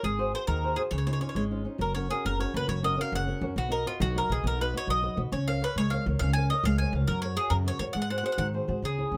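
A lilting 6/8 sway with a straight feel carries this short Italian folk serenade, romantic and sunny in mood, cut from a longer piece. A bowl-back mandolin sits up front with the melody, its bright, picked double strings ringing clearly across the full 9.2 seconds. Beneath it, a flamenco guitar supplies fingerpicked accompaniment in a flamenco style, its fresh strings giving a warm, acoustic glow. An upright bass, also up front, anchors the low end with pizzicato gut strings that sound woody, dark and thumpy. After an opening passage, the music settles into a new section at 1.8 seconds, moving through major and dominant-seventh harmony in the manner of a classic serenade. The sound is dry and close, with little reverb, keeping each acoustic instrument intimate and distinct.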